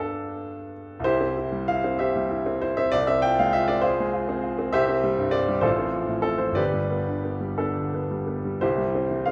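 A romantic classical character piece for solo piano, this short excerpt in C major moves in a flexible, rubato 6/8 at roughly 54-67 BPM, its mood passionate and hopeful. A clear, natural grand piano sits up front, ranging from G1 to G5 and tuned slightly high at A4 = 441 Hz. It passes through a progression that darkens briefly to F minor over C before settling through G back to C at 8.6 s, all within a moderate recital hall reverb and with lossy compression artefacts.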